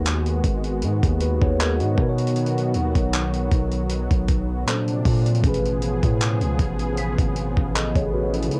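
Contemporary R&B at 78 BPM with a longing, late-night mood, this short cut from a longer piece sets a mellow tine electric piano through phaser over a smooth, airy, detuned analog pad that pumps beneath a sidechain. A deep, sine-toned 808-style bass sits up front, alongside a gritty, compressed sampler-style kit of thumpy kick, hi-hat and handclaps with a lightly swung feel. A very quiet, woody mallet-like pluck glints high above during the opening 2.3 seconds and again from 7.0 seconds, over chords moving from G#m7 to Bmaj7, A#maj9 and Amaj9. The whole piece carries a dry, close, home-cassette sound.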